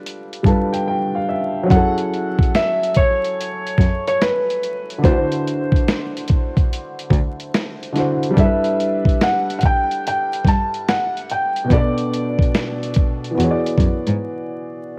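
A swung 72 BPM groove in 4/4 from a gritty, compressed sampler-style drum kit, with thumpy kick, medium-tuned snare and hi-hat, sets a dreamy, nostalgic lo-fi hip hop mood; the kit briefly drops out at 0.9 seconds and breaks off at 14.2 seconds. A woody, vintage upright piano with long sustain and audible action noise carries the chords from the start, a smooth, bowed cello with vibrato supplies the bass, and a soft, felt-muted upright piano sings a mellow, intimate melody from 1.7 seconds. The excerpt has a home-recorded cassette character with vinyl crackle and studio reverb, as the harmony moves from G9 through F#m7, D7, G6 and Bm7 to E7.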